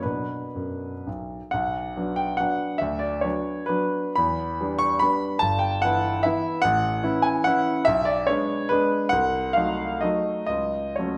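A clear, polished grand piano carries this brief solo from start to finish, sitting up front with a present tone and long sustain that lets each chord ring into the next. The music is a romantic classical dance in triple time, built on dotted rhythms and shaped with a supple rubato that gives it a wistful, nostalgic air. The playing spans a broad register from deep bass notes to bright upper tones, and a short opening phrase gives way at 1.5 seconds to a longer second section. The harmony drifts through minor colours and passes through diminished chords before coming to rest on an unsettled minor chord near the close. A wet recital hall reverb surrounds the instrument with a lingering sense of space, and the passage is clearly lifted from a longer piece.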